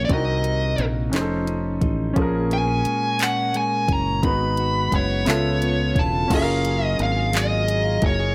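Set in a slow, straight 6/8 at 58 BPM counted in dotted quarters, this intimate R&B piece in F# major is cut from a longer work. A produced, electronic-sounding drum kit with a soft kick, hi-hat, handclaps and crash cymbal sits alongside a round, up-front fingered electric bass, while a clear, polished baby grand piano carries the accompaniment. Leading the melody is a dark, overdriven lead guitar, picked and placed up front, with a slapback echo on its tone. Beneath it, a clean, compressed electric guitar plays a second line in the background. From 2.2 seconds a soft, flute-like tonewheel organ joins with sustained chords through a slow rotary speaker, mellow and tucked well back in the mix. The harmony moves through Cm7b5, F7b13, A#m7, G#m7 and C#7alt before arriving on F#maj9 at 6.3 seconds for a short closing section, all bathed in light reverb.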